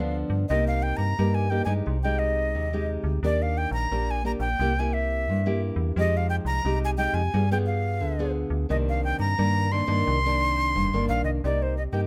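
Yearning yet lively, this short cut from a longer samba and choro piece moves at 88 BPM in C minor, with a breathy, bright jazz flute carrying the vibrato-laden melody over a full-bodied, fingerpicked nylon-string guitar with audible finger squeak and a metallic, fast-attack digital FM bass, all three up front under light reverb and close, detailed microphones as the harmony travels from Cm7 through Fm9 and G7b9 to Cm9 before settling back on Cm7.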